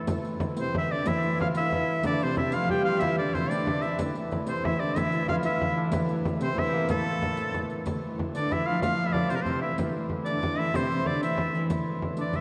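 A driving, ancient medieval dance in A minor moves at 124 BPM in a straight 6/8, heard as a short cut from a longer piece. The hammered dulcimer and a dark, nasal, woody hurdy-gurdy open together at the start, the dulcimer shimmering as a second line while the wheel-bowed hurdy-gurdy holds a low drone in the background. A soft-handed frame drum and a riq with bright jingles enter at 0.1 seconds, both close and dry, the riq sitting further back. At 0.6 seconds a bright shawm takes the solo melody up front, folk-styled with vibrato and a slapback echo, joined by a clear, intimate viola da gamba whose airy, ringing bowed line forms a low second voice. The whole is bathed in a wet church reverb and colored by worn cassette tape with a warbly pitch drift, and a new section begins at 7.9 seconds.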